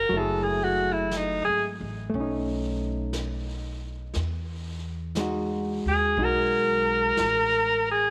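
Romantic and tender, this swung jazz excerpt puts a bright, punchy alto saxophone solo up front, full of vibrato and scooped notes, over dark, clean fingered hollow-body guitar chords moving from F#m9 through B9 to Emaj9, a woody pizzicato upright bass, and quiet brushed snare and hi-hat, the whole mix sitting in a moderate echo-chamber reverb.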